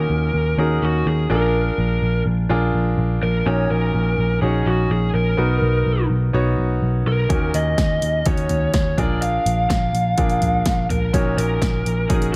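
Earnest and dramatic, this piano-driven pop passage moves in a straight 4/4 and is cut from a longer piece. A clear, polished concert grand carries the accompaniment with deep bass and short sustain, while a dark, overdriven lead guitar through a small cranked amp sings the melody with a picked, lo-fi edge up front. Beneath them, a vintage muted picked electric bass sits forward in the mix, round and foam-muted with an amped darkness. At 7.3 seconds a punchy analog drum machine joins, dry and overdriven, bringing hi-hat, toms, a punchy kick and a punchy snare. The harmony circles through minor seventh and dominant seventh chords with a brief major seventh turn, all set in light reverb and digital ambience.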